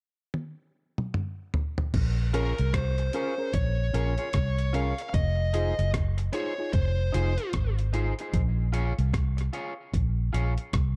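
Deep and meditative, this dub reggae excerpt opens with a drum fill on a gritty, compressed sampler-style kit, its thumpy kick, toms, rim click, hi-hat and crash sitting up front. At 1.9 seconds a foam-muted fingered electric bass enters, round, punchy and amped, anchoring a swung 4/4 groove that moves from Bbm7 to Fm7 and back. From 2.3 seconds a high-gain lead guitar carries the melody in a distorted tone trailed by tape echo. Alongside it, an electric guitar at the edge of break-up adds twangy picked accompaniment, and a reedy electric piano heard through its built-in speakers supplies clean stabs, both also touched by tape echo. The lead guitar stops at 7.5 seconds, and the piano soon after, leaving drums, bass and rhythm guitar to carry on. Light reverb and a dark, warm production give the track its depth.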